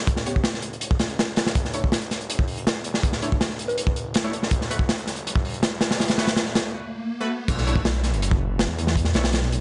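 Drum and bass with a jungle edge, this dark, nostalgic clip from a longer piece builds for 7.5 seconds over a crunchy, gritty breakbeat kit with dark cymbals and a tight kick, sitting up front alongside a thick, beating detuned saw bass with tube saturation and an orchestra-hit-like synth stab that carries a filter sweep, built-in reverb and dub echo in the background. A woody mallet-like pluck flickers briefly at 3.7 seconds through chorus, phaser and dub echo, and a very quiet electronic riser enters at 4.8 seconds. A short break from 6.7 seconds gives way to the drop at 7.5 seconds as the chords move from A through Bm11 and F#madd11 back to Bm11.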